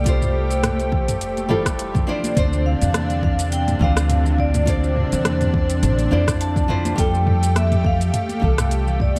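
Warm and wistful, this sunset chillout piece in D minor moves at 104 BPM with a gentle 16th-note swing, drifting from Fmaj9 to Dm9 and settling on Fadd9 near 7.0 seconds. A bright vibraphone with medium hard mallets carries the ringing melody through digital delay and shimmer reverb, over a fingerpicked nylon-string guitar with audible finger squeak, a thick, detuned sawtooth pad with chorus, and a woody, growly pizzicato upright bass coloured by tube saturation. A deep electronic kick and a produced deep house kit with metallic hats, rim clicks, shaker and toms anchor the groove, while hard-handed congas join at 0.6 seconds in the background of a dark, intimate small-room mix.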